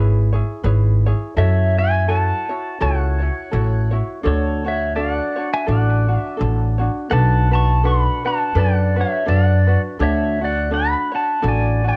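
A bright, clean electric pedal steel guitar carries the melody up front from 1.4 seconds, played with fingerpicks and slide, with volume swells, compression and a cassette-tape tint with analog delay. This relaxed, languid Hawaiian excerpt moves at 84 BPM in 4/4 with a swung eighth-note feel. Beneath it, a growly, woody pizzicato upright bass sits prominently and a light, fingerpicked acoustic ukulele picks out gentle accompaniment through a C#m7, F#m7, Dmaj7 and Bm7 progression, all captured dry in a home cassette recording.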